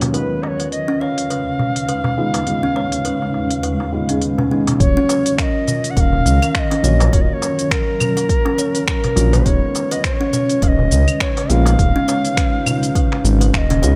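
Earthy and mystical, this organic downtempo excerpt sets a reedy, airy cedar flute melody over woody kalimba arpeggios and a blurred, evolving granular cloud pad, with both kalimba and pad moving through filter sweeps during the first 4.8 seconds. A soft, felt-muted upright piano sits dark in the background, while an organic electronic kit of claves, finger snaps, smooth hi-hat and shaker swings alongside a clay-shelled darbuka played with soft hands. At 4.8 seconds a deep electronic kick and an up-front, saturated gliding synth bass arrive, the bass, pad and piano pumping together, and tape echo trails the flute, kalimba and piano in a small, lightly reverberant room.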